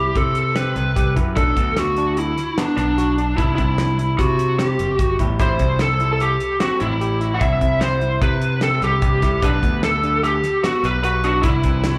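A dark, overdriven lead guitar sits up front, its lo-fi, picked tone carrying the melody through a small cranked amp with slapback and tape echo. This short, brooding cut from a longer progressive instrumental moves in an uneven 5/4 with a straight feel, giving the band's playing an intricate edge. Beneath it, a bright, direct electric bass is picked prominently, while a barky tine electric piano spins clean arpeggios touched with slapback echo. A hollow-body archtop guitar, miked and amplified, adds dark, clean picked accompaniment at a very quiet level, and a damped 70s acoustic kit with a medium-tuned snare and tight kick plays dry from 0.2 seconds to 11.9 seconds. The harmony circles around Cmaj7, returning to it between Bm7 and Am7, and the whole band is heard as a live gig through the venue's PA, wrapped in light club reverb.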